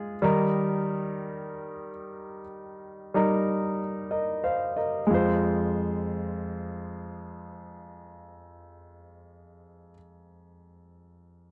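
Melancholic, emotional pop in F minor at a slow 44-55 BPM in 4/4, this excerpt features a clear, polished baby grand piano up front, spanning F2 to F5 and tuned to A4 = 436 Hz, easing down in tempo through the first 5.1 seconds over an Eb chord before settling on F minor in a dry, close, 1970s-style small-room studio sound.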